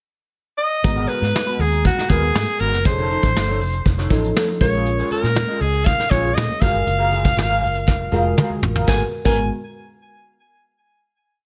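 A raspy, gritty alto saxophone leads this polished 1980s jazz-funk pop piece with punchy, motif-based phrases sung with vibrato and a touch of delay, entering at 0.6 seconds over a slick, bittersweet groove at 120 BPM in G# dorian. Beneath it, a dreamy FM electric piano with a soft pad layer comps in pushed drop2 voicings through phaser and lush chorus, a bright, twangy guitar through a small old amp picks a crisp sixteenth-note riff with analog chorus, and a round, foam-muted fingered bass weaves an agile syncopated line with chromatic approach notes. A vintage brush kit with dark cymbals and a tight kick drives the groove up front, adding a fill before the final chord at 8.9 seconds, while low-tuned congas join very quietly at 5.1 seconds with a slap on two and open tones on four.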